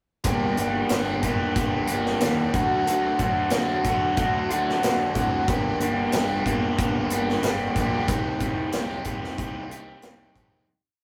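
A straight 4/4 pulse at 92 BPM drives this short, gritty classic rock piece in G harmonic minor, tuned slightly sharp to A4 = 445 Hz. The big acoustic rock kit sits up front with a punchy kick, a medium-tuned snare and hi-hat, laying down a big rock groove. Two overdriven guitars carry the riff in driving eighth notes: the louder, up-front one is dark and compressed, playing open chords, while a biting, phaser-coloured guitar adds barre chords beneath it. A fuzzy, growly picked bass sits in the background with a bright, overdriven edge, pumping eighth notes through the low register. The verse moves from Gm to D, back to Gm and on to Cm, with everyone entering at 0.2 s and a fade-out running from 8.1 s to the close at 10.7 s. The sound is that of a rough rehearsal room with a wet studio ambience and a short reverb tail.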